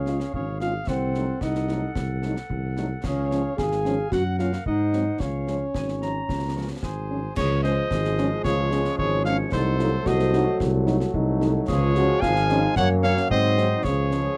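A straight 2/4 pulse at 111 BPM drives this proud, festive military-style march for wind band in Db major, cut from a longer piece, with concert snare drum, concert bass drum and clash cymbals sounding close and dry under dark cymbals. A present cornet with light vibrato carries the melody over an up-front, mellow tuba bass, while a euphonium and a distant, roomy woodwind section share the second line and a punchy French horn section supplies accompaniment in the background. At 7.4 s the opening phrase returns and a tight, soft-attack trombone section joins with sustained chords, the whole set in a dark, warm production with light reverb.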